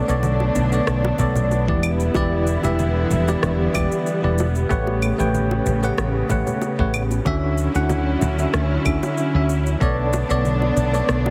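Heavily compressed, radio-like sound with light digital ambience frames this smooth, blissful sunset chillout excerpt at 94 BPM in D major with a gentle sixteenth-note swing, where a bright, bell-like tine electric piano with delay sits up front over an intimate bowed string section holding sustained chords sul tasto, a dark, round fretless bass with tube saturation, a tape-toned electronic shaker, rim click and claves in a small room, very quiet close and dry congas and bongos, and a knocking electronic kick that enters at 1.2 s and drops out at 9.9 s, moving through Bm9, Em7, A13 and Dmaj9.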